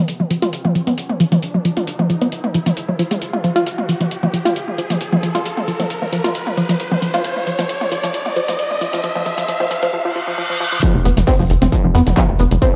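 A tight, detuned sequenced synth riff carries this driving peak-time techno excerpt at 134 BPM, its sawtooth plucks coloured by chorus, phaser, tube saturation and tape echo, and pumping against the beat from the very start. Beneath it, a layered electronic drum kit of handclaps, metallic hats and toms plays in a small room, while a riser and then a reverse cymbal build tension across a filter-swept opening that runs to 10.8 seconds. At the drop, a distorted electronic kick lands up front alongside a punchy, nasal sequencer bass in the low register, pumping with the sidechain and giving the groove its weight. A dry, damped 70s kit with a fat snare and rolled-off top sits in the background at the same moment, adding an acoustic layer to the hits. The whole track has a hypnotic, home-cassette grit, wrapped in moderate spring reverb, and the harmony settles on F5 once the drop arrives.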